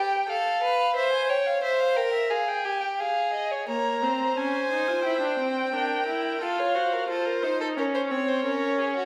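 A rich, expressive solo violin carries the melody with vibrato and portamento over a smooth, even second violin in this driving yet contemplative baroque-style string quartet fugue, cut from a longer piece, with a single viola entering at 3.7 seconds to add an expressive, gliding accompaniment, all set in the lingering reverberation of a recital hall.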